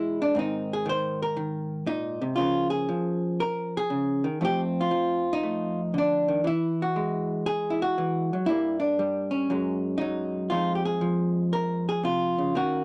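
A dry, close studio sound in a 1970s style frames this short excerpt from a longer piece, with a light touch of reverb around the playing. It is a solo jazz performance in Db major at 118 BPM in 4/4, swung on the eighth notes, and its mood is sophisticated and playful. The only instrument is a vintage hollow-body electric jazz guitar, picked and clean, with a dark, compressed tone that sits up front and ranges from F2 to C5. It opens with a solo passage over an Abadd9 that runs until 2.4 seconds, where the next section begins on Db6. From there the harmony moves through F6, Eadd9, Gm and Gbsus2 before settling on Fm7 at 10.5 seconds, and the excerpt ends at 12.8 seconds.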